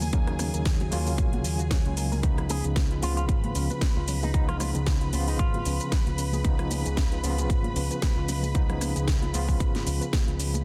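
Dense, heavily limited and bathed in digital ambience, this sleek, cosmic nu-disco drop at 114 BPM, swung on Ebm7 and Db9, rides a punchy up-front electronic kick, a house kit with cracking snare and metallic hats, soft-handed vintage congas in the background and a bright, punchy envelope-filtered picked bass, while a barky, gritty overdriven tine electric piano with fast tremolo and tape echo, lush bowed studio strings and a dark, round chorused pluck arpeggio all pump with the sidechain, and a twangy, clean envelope-filtered electric guitar melody with tape echo appears from 2.5 to 5.9 seconds.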